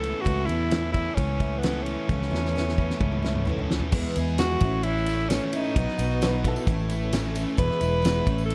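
A dark, reverb-washed production frames this hopeful folk and heartland rock excerpt at 131 BPM in 4/4, where a raspy, forceful tenor saxophone carries the melody up front over a round, foam-muted fingered electric bass, a fat-snared country drum kit that plays a fill at 2.1 s before the music moves into E major, a bright picked steel-string acoustic guitar in the background, a double-tracked overdriven electric guitar riff and a very quiet, mellow tonewheel organ with slow rotary, while a jingly tambourine enters at 4.2 s and a woody upright piano adds a brief second line at 6.3 s.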